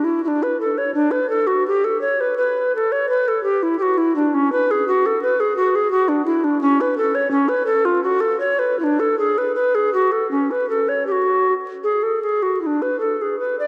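Solemn and grave, this short cut from a longer baroque-style classical fantasia features a solo tenor recorder, woody and airy with gentle vibrato, soft attacks and a touch of chiff, played up front in free rubato at 76-88 BPM in 3/4 and tuned to A4 = 443 Hz; it moves from B minor to F# minor at 4.5 seconds within a long, wet church reverb and a dark production flecked with vinyl crackle.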